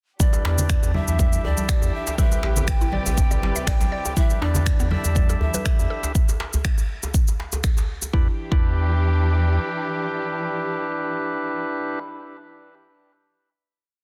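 A four-on-the-floor kick with lightly swung cabasa and finger snaps, interlocking congas in the background and a cracking djembe cross rhythm drives this earthy, propulsive afro house piece, as a round sine sub bass pumps a dotted rhythm beneath lightly overdriven, percussive tonewheel organ stabs under a filter sweep, muted con sordino strings hold veiled chords, a woody mallet-like synth pluck arpeggiates from 2.2 s, and breathy cane pan pipes call out short motifs until 6.1 s before the groove gives way at 8.1 s to a final chord held by the organ and strings.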